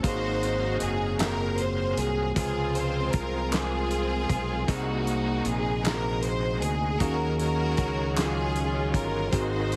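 A lush, up-front string section carries the melody in this slow, soulful gospel excerpt at 52 BPM in 6/8, its clear, focused bowing riding over a bell-like tine electric piano and a bright tonewheel organ held in the background, shouting through slow rotary speaker, light overdrive and chorus vibrato. A fat-snared soul drum kit with a tight kick and rolled-off top sits alongside a bright fingered electric bass up front, while hollow, distant group handclaps come in at 1.2 seconds and stop at 8.5 seconds. The hopeful progression moves from Ab13 through Dbmaj7 and Ab9 to Ebm11 in a small room, with a heavily compressed, radio-like sound.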